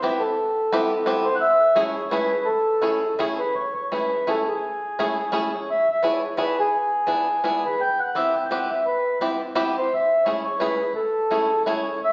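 Heard from further back in a recital hall, this short excerpt carries a wet reverb with a 1.5-second tail that softens its edges. It is a whirling, charming musette in A major, moving at 170 BPM in 3/4 with a slight swing on the eighth notes and a rubato feel. An accordion with dry tuning carries the melody, its reedy, dark and smooth tone sitting up front. Beneath it, a fingerpicked bluegrass banjo plays a twangy, percussive accompaniment in a lower register, also placed close. The harmony moves from Cmaj7 to Amaj7, then through E7 at 5.7 seconds before returning to Cmaj7 and Amaj7. A brief opening phrase gives way at 3.6 seconds to a longer restatement, and the piece is cut from a longer performance.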